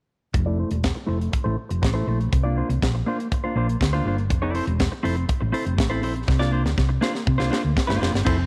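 Disco at 121 BPM in F major, joyful and glamorous, cut from a longer piece: a picked, compressed clean electric guitar runs through a low-pass filter sweep over Fmaj7 and C9sus4 while a dark, round hollow-body short-scale fingered bass and a tight funk kit with a high-tuned snare and dark cymbals drive underneath, all up front in light studio reverb, with a drum fill from 6.3 to 8.3 seconds.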